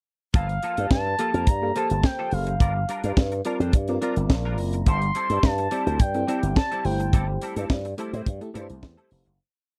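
Early-eighties boogie funk in G dorian at 106 BPM, slick and danceable, built on a tight, dry four-on-the-floor drum kit with a high-tuned snare, a growly, punchy slap bass run through an envelope filter playing a fat syncopated line with chromatic approach notes, choppy sixteenth-note twangy clean guitar with ensemble chorus, and a mellow, round FM electric piano entering at 1.2 s with syncopated chord stabs and a short fill at 3.7 s, while a smooth sawtooth synth lead with chorus and vibrato sings motif-based call phrases over Gm9 and suspended chords before the close, dry, 1970s-style studio sound fades out from 7.1 s.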